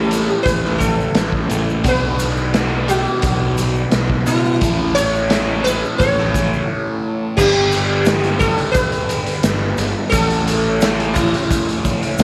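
A buzzing, shimmering sitar carries the melody through this hazy, kaleidoscopic psychedelic rock excerpt at 87 BPM, with slapback echo on its plucked lines over a double-tracked overdriven guitar riff colored by phaser and a round, fuzz-soaked fingered bass sitting up front. A punchy garage drum kit in a bright stone room and a grainy egg shaker in the background enter at 0.1 seconds, while a very quiet, warbling string-machine cello pad holds sustained chords underneath. The harmony moves through A, B minor and back to A, a short break arrives at 6.7 seconds, and a G-to-A passage follows from 7.4 seconds.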